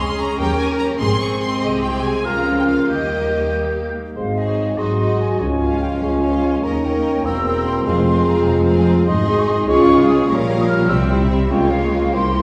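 Dramatic and stormy, this quick classical-period orchestral passage in 6/8 sets focused violins on the melody over a second violin line, a dark clarinet, a pure silver flute and lush violas, with distant, roomy French horns holding sustained chords and rich cellos and warm double basses anchoring the bass, before a clear oboe and a smooth-topped bassoon join at 4.2 s, all carried by the reverberant bloom of a recital hall heard from further back.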